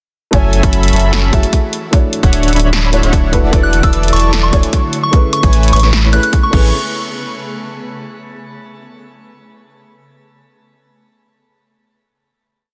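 An overdriven, hard-clipped electronic kick sits up front in this playful, lush future bass piece, driving a half-time drop with a punchy snare, hat rolls and crash from a layered dance kit, while a thick, saturated sub bass follows the chord rhythm. A smooth, detuned supersaw throbs in syncopated chord stabs with dub echo, and a felt-muted upright piano adds intimate, mellow held chords with syncopated pushes, all pumping against the kick. An ethereal pad drifts in behind at 1.7 s, a gentle, warbling FM bell enters at 3.6 s with short answering phrases, and the dense, heavily limited piece closes on a final hit at 6.7 s.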